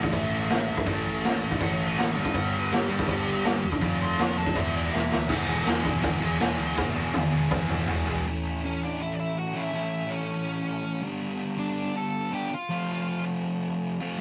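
A raw garage drum kit sits up front with a boomy kick, a medium-tuned snare, a gritty, saturated tone and a rolled-off top, driving this energetic, rowdy punk rock excerpt alongside a dark, sludgy distorted guitar riff that runs throughout. A crunchy overdriven guitar and a bright, growly picked bass fill out the background until the drums, bass and crunchy guitar drop out at 8.2 seconds, with drum fills marking the turns, while a dark high-gain lead guitar carries the melody in two stretches over a chord cycle of A, G, F and E. The light reverb and rough rehearsal-room sound keep it loose and live.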